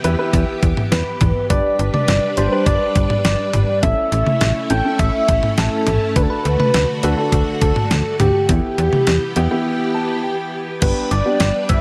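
A nostalgic, upbeat synth-pop passage opens with a thumpy, sampler-style 8-bit drum machine with kick, snare, hi-hat, toms, cowbell and crash sitting up front beside a snappy, metallic slap-like FM bass. A dark, intimate baby grand piano with audible action noise accompanies, while a shimmering, vintage string machine on violins gives chorused sustained chords over Em, G, A and D. At 0.9 seconds a soft, round FM synth lead enters with the melody, gentle and keys-like with vibrato, chorus and tape echo. Near the close, from 9.7 to 10.8 seconds, the mellow piano plays a short fill in a break, all in a light reverb.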